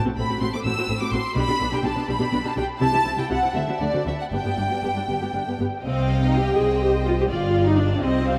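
Spirited and cheerful, this quick classical-period passage for string orchestra moves in a rubato 6/8 at about 77-85 BPM in dotted quarters, in G major, bathed in a huge, wet reverb that places the players in a vast, echoing space. A close, warm first violin section carries the melody with expressive vibrato and portamento, while a distant, rich second violin line stays smooth and even. Lush violas sit up front with their own sliding accompaniment, over focused, clear cellos and even double basses. The harmony moves through C and D7 to G before turning to C minor as a new section begins at 5.8 seconds, in this short fragment of a longer piece.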